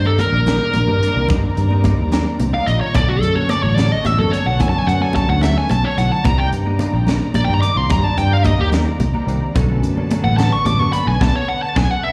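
A dark, distorted lead guitar solos up front through slapback and tape echo in this driving, slick electric jazz fusion excerpt, set in 6/8 at 73 BPM over chords alternating between Cm9 and Bm9. Beneath it, a growly, amped fretless bass sits forward and a tight funk drum kit with a high-tuned snare sits mid-forward, while ringing congas played with soft hands, a bell-like tine electric piano with phaser, scooped clean stabs from a compressed semi-hollow guitar with ensemble chorus, and a smooth bowed string section with light vibrato fill the background. The whole band hits an accent at 11.2 seconds, and the sound carries the club reverb of a live gig heard through the venue's PA.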